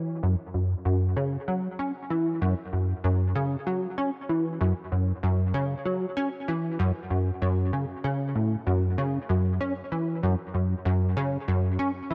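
Mysterious and expansive, this short ambient excerpt unfolds at 96 BPM in 4/4 with a straight feel, centered in F# minor and tuned to A4 = 442 Hz. A plucky analog bass carries the whole passage alone from 0.0 to 12.1 seconds, ranging from F#2 up to C#4. Its sawtooth and square-wave tone has a punchy, funky character, with a fast attack and a decaying filter pluck, sitting up front in the mix. Ensemble chorus and tape echo color the bass, giving it a shimmering, repeating halo. Light reverb and a digital ambience frame the sound, lending the solo line an airy sense of space that suits the mysterious mood.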